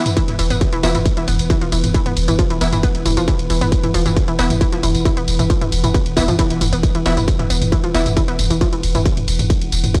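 An eerie, metallic drone opens this dark, intense excerpt of driving peak-time techno at 135 BPM, quickly joined by a punchy analog drum machine's pumping hats, ride, tambourine and toms, a distorted, layered kick, a nasal wave-folded pluck riff with analog delay, a deep saturated sub bass on E1, and aggressive detuned rave stabs with tape echo, all in a gritty, dry cassette-tape sound.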